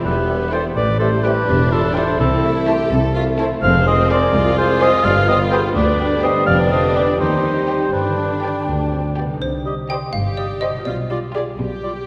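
A playful, whimsical cinematic film cue in 6/8, cut from a longer piece, with a mischievous, quirky air. A very quiet, lush studio violin section carries the melody with focused vibrato, joined by a chamber violin section, while the up-front cor anglais, a clarinet in the background and an airy silver flute weave second lines around it. A clear viola section and a very quiet bassoon fill in the accompaniment, the French horn section holds vintage-tinged sustained chords, and a fingerpicked concert harp rings out arpeggios across a broad range. Underneath, an intense bowed double bass section, a rich cello section and a background tuba form the bass. At 9.4 s the horns and tuba drop out and a dark, woody xylophone with plastic mallets steps forward to take the melody over the closing stretch. A wet scoring-stage reverb gives the ensemble a spacious hall sound.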